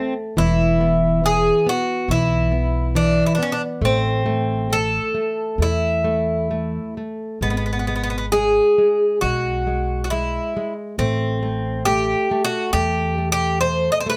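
Close, detailed microphones and a light reverb give this short cut from a longer fado-style ballad an intimate, present sound. The mood is passionate and mournful, with a rubato feel that lets the 4/4 pulse breathe. An acoustic Irish bouzouki carries the melody up front, its picked double strings ringing with a metallic shimmer. Beneath it, a classical nylon-string guitar offers a warm, fingerpicked accompaniment, with audible finger squeak adding a human touch. A woody, dark upright bass with steel strings enters at 0.4 seconds, playing thumpy pizzicato notes until 13.9 seconds. The harmony moves from E5 to Am, then to G#m7, and returns to Am.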